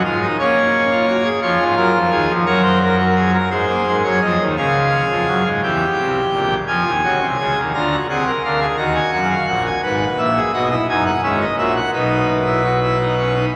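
A majestic, brilliant pipe organ on full organ with mixtures and a romantic voicing sits up front in this driving yet contemplative baroque-style three-part fugue in 6/8 at 57 BPM, cut from a longer piece, moving from F# major to B major at 9.8 s while a cathedral reverb with a 5.1-second decay rings around it.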